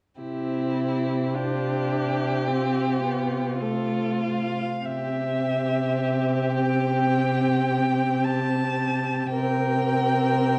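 Serene and lyrical, this slow romantic string quartet excerpt drifts in rubato at 46-56 BPM in C major, resting on C before moving to F over C at 2.5 seconds and returning to C at 4.9 seconds. A warm first violin carries the bowed melody with vibrato and portamento, alongside a rich second violin on a lower line, while the viola fills in the accompaniment and an up-front cello holds a low C beneath, each played expressively by a single musician. The violins and cello sound distant within a moderate recital hall reverb, giving the production a dark, mellow glow.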